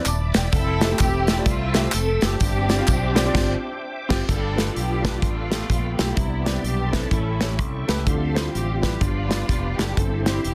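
Uptempo gospel at 127 BPM with a swung feel, reverent and jubilant, where a woody, slightly detuned upright piano, fingered electric bass and an up-front country drum kit with dark cymbals drive beneath a portamento-laced studio string melody, a reedy, lightly overdriven tonewheel organ with slow rotary speaker sits in the background, handclaps and tambourine drop out at 3.2 seconds just before a band accent, and a very quiet, mellow French horn section joins at 4.3 seconds, all in a dry, dense, heavily limited mix.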